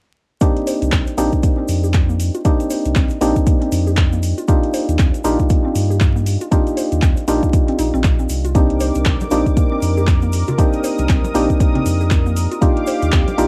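A hollow, organ-like stab sits up front with chorus and analog delay, pumping against a deep, tape-warm electronic kick in this hypnotic deep house excerpt at 118 BPM in C minor, swung on the sixteenths and opening on a Cm9 chord. Around them, a round sine sub bass with tube saturation enters at 0.8 seconds, a drum kit adds metallic hats and handclaps, a grainy egg shaker sits in the background, and a woody, nasal FM mallet pluck plays arpeggios under a filter sweep. A detuned sawtooth pad with tremolo arrives at 8.6 seconds and ringing congas at 9.2 seconds, all within a small home-cassette room touched with vinyl crackle.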